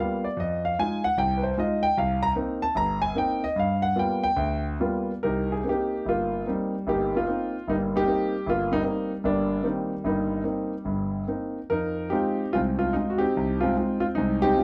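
A dark, intimate recording with light reverb opens on a concert grand piano heard up front, its deep bass and audible action noise giving the solo a close, natural presence. This short solo jazz fragment, cut from a longer piece, has a cool, swinging mood in 4/4 with a rubato feel, moving through Fm7, Cm7 and G7#9 before settling on Cm7 at 5.2 seconds. The piano carries the whole passage alone, ranging from low G1 up to Bb5 and returning to Fm7 at 11.7 seconds.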